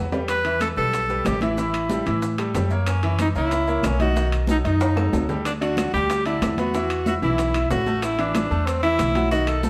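Heard from further back in a reverberant studio, this passionate, danceable salsa passage in E minor moves at 186 BPM. A clear tenor saxophone with vibrato carries the pop-style solo melody up front, dressed in plate reverb and tape echo, while a thumpy, dark pizzicato upright bass on gut strings sits equally forward and a bright, brilliant grand piano with short sustain plays accompaniment. Behind them, saturated high-tuned congas, ringing metal-shell timbales and grainy maracas fill the background, very quiet round bongos and woody claves sit close and dry, and a drum fill at 4.8 s leads into a new section at 5.5 s.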